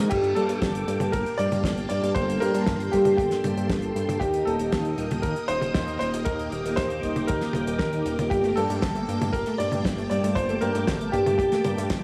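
Lush string machine chords with ensemble chorus, a fat, detuned analog bass, dark chorused synth brass stabs in the background and a brief, very quiet analog pluck open this melodramatic, nostalgic italo disco excerpt in G minor at 117 BPM, before a clear, worn grand piano melody with tape echo comes up front over a dry, damped 70s drum kit with a fat snare and a tight kick drum, moving from Gmadd9 to Eb and back as the brass drops out and the plucked arpeggios return at 8.3 seconds, all set in a light small-room reverb.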